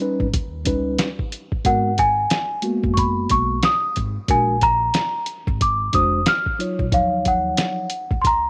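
A small room's ambience and light reverb frame this short, cool, smoky jazz-hop cut, taken from a longer hip hop piece with a swing feel on its 16th notes. A mellow, clean tine electric piano opens the excerpt and lays down the accompaniment through its built-in speakers, moving from Ebaug7 through Abm9 and Bb7b13 before settling on Ebm9. At 0.2 seconds a lo-fi, sampler-style drum kit and a pizzicato upright bass join in. The drums sit up front, compressed, pitched down and muffled, with a thumpy kick, a medium-tuned snare, hi-hat and a tape-warm glaze. The bass has a woody, acoustic tone from its steel strings. At 1.7 seconds a worn celesta takes the melody, bell-like, delicate and sweet, its soft felt hammers giving a slightly out-of-tune, mid-forward voice that sits up front in the high register.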